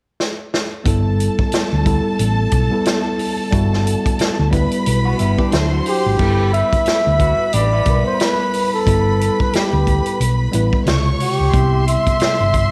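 Warm and smooth, this lush 1970s-style soul excerpt in G major moves at an unhurried 90 BPM with a swung sixteenth-note feel, opening on a drum fill from the punchy, up-front vintage kit with its dark cymbals. A worn, slightly out-of-tune tine electric piano with phaser enters at 0.8 seconds, and a round, dark hollow-body bass and a rich bowed violin section with expressive vibrato settle in at 0.9 seconds. A twangy, slightly broken-up guitar riff sits in the background from 5.1 to 8.7 seconds, and at 5.9 seconds a breathy, mellow flugelhorn takes the jazz-style solo melody up front, with scooped notes and a slapback echo. The chords rest mostly on G6/9 with a turn to D9, then slide from C#maj7 to Cmaj7 near the end, all in a small room with light reverb.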